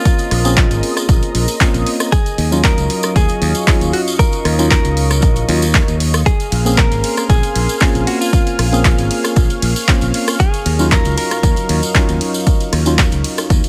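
This deep, late-night deep house excerpt at 116 BPM opens with a clean, picked electric guitar melody touched by 12-bit grit and dub echo, set against a dark, detuned analog pad, silky string pad and hollow, chorused organ stabs with digital delay, all circling Bbm9 and Ebm9. At 0.1 seconds a dry, overdriven kick punches up front alongside a drum machine of handclaps, hi-hat, ride cymbal and rim click, plus a jingly, close tambourine, and a bright, growly fingered bass with tube saturation joins at 0.3 seconds. Sidechain pumping breathes through the pads, stabs and bass in a mix with little reverb.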